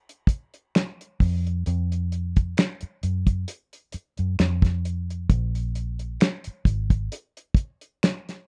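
Sultry and smooth, this short slice of slow neo-soul R&B at 66 BPM with a light sixteenth-note swing sets a damped 70s drum kit of finger snaps, hi-hat, kick and fat snare, dry and rolled-off up front, against a round, foam-muted vintage electric bass that enters at 1.2 seconds and sits dark and amped between Ab1 and Gb2, all in a rough home-demo sound with little reverb.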